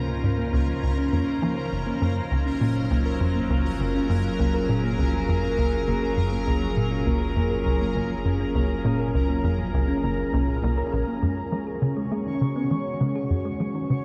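A punchy, nasal sequencer bass drives this mysterious, expansive slice of ambient space music, its sawtooth-and-square riff up front in a vast, echoing cathedral reverb, with a filter sweep passing over it from 11.2 seconds as the harmony moves from Dbmaj7 and Gbmaj7 to F#sus4. Around it, a morphing, detuned wavetable pad holds sustained chords, while a round, tine-like FM pluck, much like a thumb piano, spins chorused, delayed arpeggios under its own filter sweep. A deep sine sub bass sits in the background until 11.2 seconds, and a resonant, bubbling texture of random filter steps shimmers high above.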